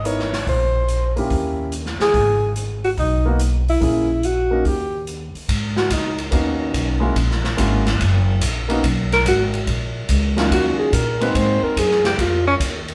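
Smoky and cool, this small-group swing-and-bop jazz in G# minor moves at 143 BPM with a swing feel: a mellow, vibrato-laced alto saxophone sits up front over a warm concert grand piano, a woody pizzicato upright bass and a polished drum kit with dark cymbals and a punchy kick, the saxophone opening a solo at 5.5 seconds, pausing, then returning at 9.1 seconds, while the piano drops out at 11.7 seconds, the band captured playing live together in one large, reverberant studio room.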